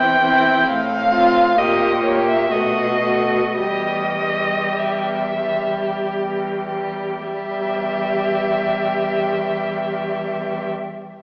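The first violin, muted and veiled with vibrato and portamento, carries the melody up front in this melancholic, elegiac fragment from a slow romantic movement for string quartet in 3/4, its smooth top lending the line a dark sheen. Beneath it a second muted violin sings a quieter inner line, while a nasal-toned muted viola supplies accompaniment and a distant muted cello holds the bass, each a single bowed player with vibrato. The pulse is free and rubato, slowing down through the opening section before a new section begins at 7.3 seconds. The harmony moves from C/E through F/A and A#dim7 to B7 before settling on Em. A wet scoring-stage reverb places the quartet further back in the room, and the whole carries a thin, boxy AM radio coloring.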